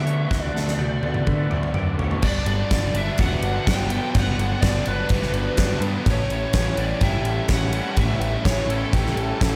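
A gated 80s drum kit sits up front in this blissful, hazy stretch of shoegaze and dream pop rock, with its fat snare, punchy kick and bright cymbals ringing in an airy stone room, and a drum fill running from 0.3 to 2.2 seconds. Underneath, a growling picked bass with overdrive gives the straight 126 BPM pulse in 4/4 a gritty low end. A bluesy overdriven lead guitar carries the melody through distortion and diffuse ambient delay, while a raw garage guitar in the background plays a riff bathed in reverse reverb, and a very quiet, dark fuzz guitar thickens the riff further. A clean, twangy twelve-string electric guitar plays compressed arpeggios with ensemble chorus and delay over a D6 chord until 2.2 seconds. At that point a double-tracked, overdriven electric guitar enters in the background as the harmony moves to Gmaj7 and later A7. The whole mix is soaked in plate reverb for a dreamy, washed-out sheen.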